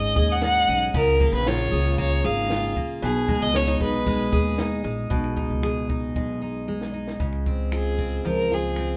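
A rich, bowed violin with vibrato sings a sunny, carefree acoustic pop melody over full-bodied picked jumbo steel-string guitar and a woody, thumpy pizzicato upright bass with gut strings, while a compact cocktail kit of finger snaps, shaker, punchy kick and high-tuned snare keeps a dry, natural, straight groove in light reverb; the violin drops out at 4.6 seconds, a drum fill arrives at 6.2 seconds, and the violin returns at 7.7 seconds.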